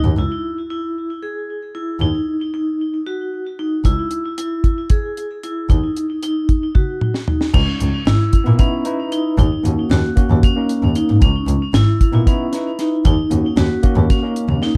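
Ringing, metallic vibraphone arpeggios struck with hard mallets and trailed by delay open this brooding, intricate progressive instrumental in 7/8, over a clear, intimately bowed double bass, joined at 3.8 seconds by a dry, dark reggae drum kit with a high-tuned snare and tight kick, while a clean tine electric piano adds accompaniment from 8.4 seconds within a softly reverberant, dusky production.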